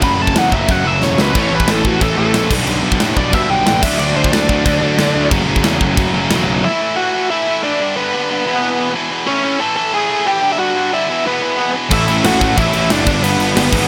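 Upbeat and energetic, this punk rock excerpt at 182 BPM opens with a dark, bluesy overdriven lead guitar soloing up front with delay over chords moving from F#m through A, G/B and D, backed by a growly fuzz bass, three distorted rhythm guitars (one sludgy, one tight, one very quiet and double-tracked) and a tight, polished metal drum kit with bright cymbals and a fill at 1.0 seconds, before settling into A major at 6.6 seconds, where the lead and the tight guitar carry on alone until the full band returns at 11.9 seconds, all in light reverb.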